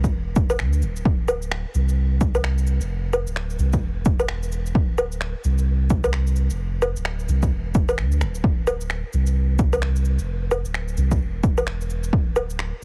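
Future garage with a melancholic, rainy mood, swung on the sixteenths, cut from a longer piece. A deep, round sine sub bass sits up front with fast attack and sustained, mellow notes, alongside a punchy, overdriven electronic kick that stops at 12.2 seconds and a layered, gritty bed of electronic shaker, cabasa, woodblock and finger snaps. The sound is dry and heavily compressed, with a radio-like, cassette-tape character.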